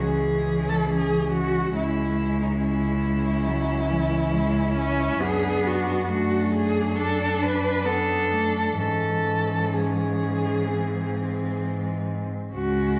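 Solemn and elegiac, this rubato classical passage for cello ensemble, cut from a longer piece, places an expressive bowed cello melody with vibrato and portamento up front over a second cello line with similar vibrato and portamento, a rich, focused accompanying cello with a smooth top, and an even, distant cello bass also heard up front, with all four voices playing through the 13 seconds in a wet recital hall heard from further back in the room.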